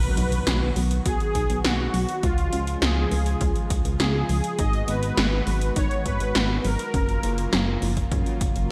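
A straight 4/4 pulse at 102 BPM drives this moody, nostalgic synthwave excerpt in G# dorian, built on up-front 80s electronic pad drums with a gated snare and metallic hats drenched in gated reverb. A punchy, tape-warm electronic kick enters at 1.1 seconds, and a very quiet electronic impact sounds near the start. Underneath, a glossy chorused synth bass with a filter pluck and fast attack pumps against the sidechain, while a brassy, bold analog pad holds sustained chords through a filter swell, moving notch and vibrato, also pumping. A smooth, soft-attack supersaw carries the melody with analog chorus and delay, and a warbling, lo-fi, dusty pluck traces very quiet arpeggios beneath it. The chords move from B to C#, then G#m7 and F#maj7, all set in light reverb and digital ambience with a bright 1980s-style digital production.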